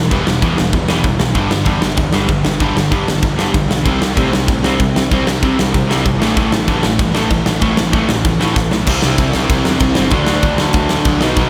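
A driving straight 4/4 punk rock groove at 192 BPM pushes an aggressive, angry excerpt where a big, bright rock drum kit up front with punchy kick, crash and snare carries three overdriven guitars (a dark, compressed one with slapback echo, a sludgy one and a very quiet double-tracked crunchy one) and a fuzzy picked bass through Em, G, C and Am, until a drum fill at 8.6 seconds leads into a C-to-D turn at 8.9 seconds, all set in a lush hall reverb for a big arena sound.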